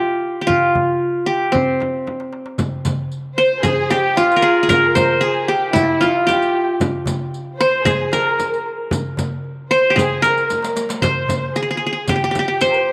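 Arabic maqam ensemble music in C maqam hijaz at 114 BPM in a straight 4/4, hypnotic and melancholic, heard as an excerpt from a longer piece. A bright-edged, plectrum-plucked qanun with triple strings carries the melody up front from the start, joined at 0.5 s by a crisp, small metal-shell darbuka and a close, dry frame drum, with drum fills at 2.1 and 10.5 seconds. A riq with dark jingles in a live room arrives at 2.6 s, and a lush, dark bowed violin section with vibrato and portamento sits in the background as a second line, all within a wet spring reverb.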